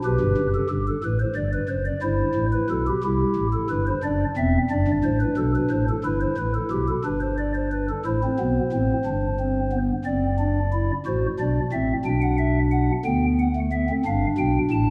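Elegant and stately, this baroque-style three-part fugue for solo pipe organ moves at a straight 60 BPM in 12/8, tuned to A4 = 441 Hz and cut from a longer piece. A stopped flute stop sounds hollow and soft with audible chiff, sitting up front across a range from E1 to A5. A wet scoring-stage reverb of about 2.0 s surrounds it, and a second section begins at 8.1 s as the harmony travels from G through D7 to close on G7 at 14.0 s.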